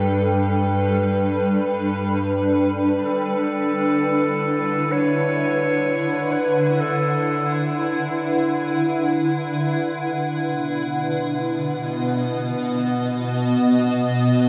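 Serene and gently glowing, this free-time ambient fragment, cut from a longer piece, floats in a huge, wet reverb with a faint cassette grain and small-room air. An up-front, cloudy granular pad sustains blurred, evolving chords from Gadd9 through D6 to B across the full 14.5 seconds, while a distant, roomy solo clarinet sings a clear classical-style melody until 7.7 seconds, trailing tape echo. Beneath, a bright, earthy chamber cello section bows a lightly vibrato bass line in the background, fading out over the whole passage.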